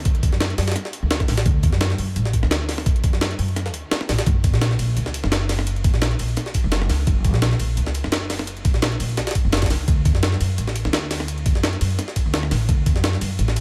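A dry, close-sounding cut from a longer liquid drum and bass piece, dreamy and lush in mood, is led by a woody, warm pizzicato upright bass up front. Alongside it sit a gritty, thumpy, compressed electronic kick, also up front, a breakbeat kit of hi-hat, ride cymbal and high-tuned snare re-recorded in a small room, and a pitched-up, tape-flavoured jungle kit with filtered hats and snare tucked in the background, with the kick briefly dropping out from 3.9 to 4.3 seconds.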